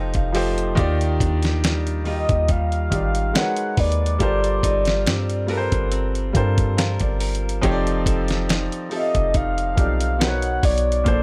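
A lightly swung 4/4 groove at 70 BPM from a dusty sampler-style drum kit with a thumpy kick and fat snare anchors this tender, romantic contemporary R&B excerpt, where a deep, boomy 808-style bass and an up-front concert grand piano, which adds fills from 0.0 to 0.8 seconds and 5.9 to 7.6 seconds, support a round, horn-like synth lead with chorus and vibrato, while a clean, direct-recorded electric guitar picks arpeggios with tape echo in the background, the whole captured as a dry, gritty hardware recording touched by digital ambience.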